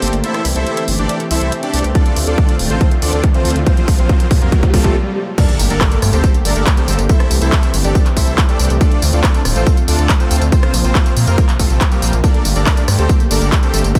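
A punchy, overdriven electronic kick sits up front in this soaring, driving uplifting trance passage at 140 BPM in G dorian, entering at 2.0 seconds alongside a drum fill. Beneath it, a gritty, aggressive synth bass blends sawtooth, oscillator sync and sine tones into a resonant, saturated growl with a filter sweep, pumping through sidechain compression. Bright, huge supersaw chords carry the melody with subtle chorus, the grit of a vintage 12-bit sampler and tape echo, while a thick, nasal unison pad holds sustained chords with a soft attack and long release. A layered, overdriven house kit of crash cymbal, handclaps, hi-hat, rim click and tambourine adds drive, and a very quiet riser and swell from 1.6 seconds lead into a brief stop before an impact marks the drop at 5.4 seconds. The chords move through C6, Dm7, Bbsus2 and Gmadd9 over a dry mix, and the passage is cut from a longer piece.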